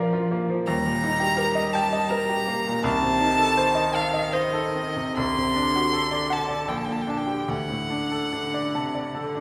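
A bright, brilliant grand piano and a rich cello with soft-attack vibrato and portamento open this short, elegiac passage from a slow romantic movement for piano trio, moving in 3/4 with rubato at 69-85 BPM. At 0.7 seconds a clear, close violin enters up front with the melody, its bowed line smooth and even with vibrato, while the piano supports it with open, short-sustained accompaniment and the cello sings an expressive second line beneath. A wet recital hall reverb surrounds the melancholic trio as the harmony drifts through diminished and dominant chords toward a closing D chord.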